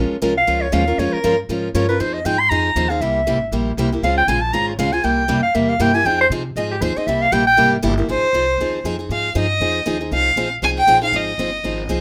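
A breathy soprano saxophone enters at 0.4 seconds, soloing in a mellow, whispered, intimate voice with a soft attack, placed up front over a bittersweet, swinging gypsy-jazz groove in F minor at 237 BPM. A picked steel-string acoustic guitar plays the accompaniment throughout, its fresh strings giving a bright, boxy parlour tone, while a pizzicato upright bass on gut strings supplies a woody, thumpy bottom end. The harmony moves through minor-seventh and dominant chords, with a Dbmaj7 passing through. At 8.1 seconds the second section begins and a bowed violin takes the melody, rich and focused with vibrato and a smooth top. The sound is a rough home demo with moderate studio reverb, and the short passage is cut from a longer piece.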